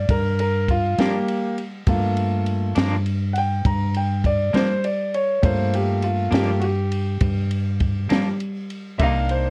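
A bright, brilliant concert grand piano takes the lead in this smoky, brooding slow blues in 12/8, its polished tone ringing with long sustain and deep bass over a Gm7 chord that moves to Cm7 at 9.0 seconds. Beneath it, a round, hollow-body fretless bass and a small, dark-toned cocktail kit sit up front, with a punchy kick, high-tuned snare and dark ride cymbal. At 1.0 seconds a twangy, slightly broken-up electric guitar enters with tremolo, and the whole fragment carries light reverb and the warbling pitch drift of worn cassette tape.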